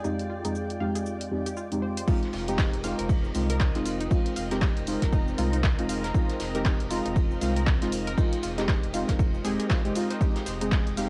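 An overdriven, punchy electronic kick drum arrives at 2.1 seconds with the drop, joined at 2.3 seconds by a deep, full sub bass with octave and tube saturation, while a dark, warbling chord stab sits up front with chorus, analog delay and sidechain pumping over Fm9 and Bb9sus4/F chords. Around them, a silky, evolving string machine holds sustained chords through ensemble chorus, a round, detuned and wave-folded analog pluck spins bright arpeggios in the background, and a dry analog drum machine supplies crash, handclaps, hi-hat and shaker. This late-night deep house groove at 118 BPM swings its 16ths, with a muffled, lo-fi brush kit adding ride and snare from a small room, all set in light reverb with a cassette-tape haze.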